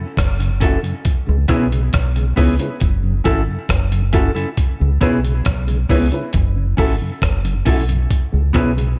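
Roots reggae with a meditative, serious mood, cut from a longer piece and moving between F#m7 and C#m7 chords. A deep, round fingered electric bass and a gritty, compressed sampler-style drum kit with a thumpy kick, hi-hat and rim click sit up front, while a clean, fingered electric guitar with harmonic tremolo and tape echo and a woody upright piano playing short stabs with audible action noise and tube saturation fill out the arrangement. A mellow tonewheel organ with chorus vibrato and slow rotary speaker hums in the background from the opening, and the whole recording is dry.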